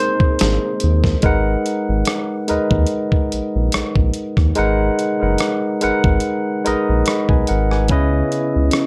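A barky tine electric piano through a combo amp opens this sultry, late-night neo-soul R&B fragment over a smooth tonewheel organ with key click and slow rotary speaker, then a gritty, compressed sampler-style drum kit with a thumpy kick enters at 0.2 seconds and a round, deep analog bass joins at 0.4 seconds, while the organ drops away and returns at 7.9 seconds, all set in a dark production with light reverb.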